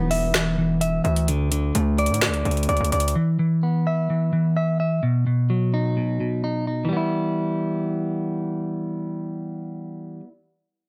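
A clean, picked electric guitar, compressed and up front, carries this dark, hard-hitting trap excerpt in E minor at 128 BPM with a half-time feel, joined for only the first 3 seconds by a saturated, heavy 808-style bass with a noise layer and a trap kit of finger snaps, metallic hats and a woody snare, all set in digital ambience and tuned slightly low to A4 = 435 Hz.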